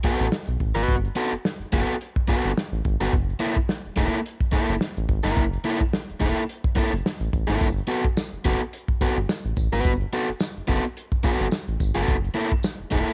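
Funk with a sly, swung 16th-note feel at 107 BPM, this excerpt from a longer piece sets a crunchy, overdriven electric guitar up front over a round, deep analog bass with tube saturation and a dark, punchy soul drum kit of hi-hat, kick and snare, the guitar and drums both carrying cassette tape coloring in a home cassette recording with studio reverb, while a jingly tambourine joins at 7.6 s as the harmony moves between Gmaj9 and F#7#9.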